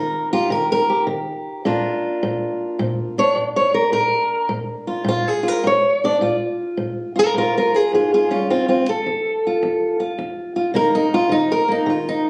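A fingerpicked old ladder-braced acoustic guitar, dark and boxy and set up front, carries this rollicking, soulful slice of swung acoustic country blues on its own through all 12.3 seconds, moving from Eb to Bb, then F and Eb5, in a phone recording of a club room with light reverb and lossy compression artefacts, cut from a longer piece.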